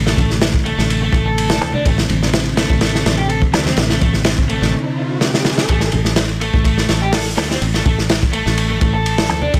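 A crunchy, straight breakbeat drives this funky, energetic excerpt, its up-front acoustic kit sounding saturated and gritty with a tight kick, a medium-tuned snare and dark, rolled-off cymbals on hi-hat and ride. Bright congas sit close but in the background, while a round, foam-muted fingered electric bass carries a dark low end through tube saturation. A raw garage guitar plays an overdriven, picked riff with lo-fi, vintage 12-bit sampler grit and delay. Underneath, a soft, flute-like tonewheel organ holds sustained chords on a minor harmony with chorus vibrato, key click and sidechain pumping, until it stops at 5.7 seconds. An electronic riser enters in the background from 4.1 seconds, joined by a drum fill just before the harmony drops away, leaving drums, congas, bass and guitar to carry on over light reverb.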